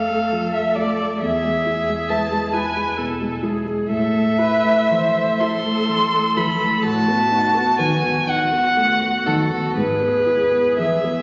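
A focused, vibrato-rich solo violin sings an elegiac, melancholic melody up front over a dark, mellow concert grand piano with deep bass and a distant viola shaded by portamento, while a woody cello enters in the background at 0.8 s, all in a slow, rubato romantic piano-quartet movement in 6/8 at 38-46 BPM, cut from a longer piece and set in a reverberant concert hall under a layer of vinyl crackle.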